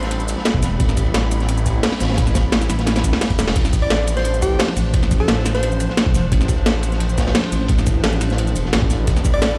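Liquid drum and bass with a rolling, melancholic feel, this short cut sets a glassy, ethereal FM pad with sidechain pumping in the background over an up-front, detuned saw bass that swells with tube saturation, moving from Am11 to Dm7 and back. Two drum kits run throughout: a crunchy, dark-cymbaled acoustic breakbeat with a rolled-off top and an up-front electronic kit with a cracking snare and metallic hats, while a gritty, thumpy electronic kick enters at 0.5 seconds and a drum fill arrives at 2.9 seconds. A round, tine-like thumb-piano-style pluck with chorus and delay carries the melody, most clearly from 3.8 to 6.0 seconds, all heard through a large studio reverb as if played on a big sound system in a bare room.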